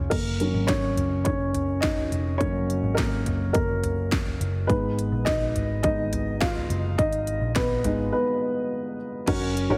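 A heavily compressed, radio-ready sound with light reverb frames this hopeful piano-driven pop excerpt in F# major at 105 BPM, where a mellow, woody upright piano carries the lead from 0.1 seconds over a punchy electronic drum kit with crisp hats and a cracking snare, a round, foam-muted vintage electric bass, and, at 9.3 seconds, a brief full-bodied fingerpicked acoustic guitar riff after a break at 8.1 seconds.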